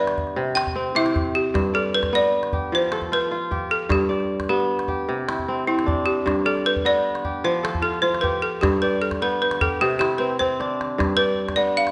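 A recital hall's reverb, lingering about 1.4 seconds, surrounds this excerpt from a longer West African traditional piece, and the top end is softened, with nothing reaching past 10.5 kHz. The mood is hypnotic and joyful, moving at 102 beats per minute in dotted quarters within a straight 12/8, in G mixolydian with the tuning set to A4 = 436 Hz. Up front, a woody, buzzing balafon struck with hard rubber mallets carries the melody between E4 and G5, its tone kept dry. Beside it, a fingerpicked acoustic kora spins ringing, crisp arpeggios from G2 up to E5, also placed close, while a small calabash in a live room keeps the percussion going from 0.1 seconds and adds a fill from 10.4 to 11.0 seconds. The harmony circles through C, G, F and G, settling on G as the passage closes at 11.9 seconds.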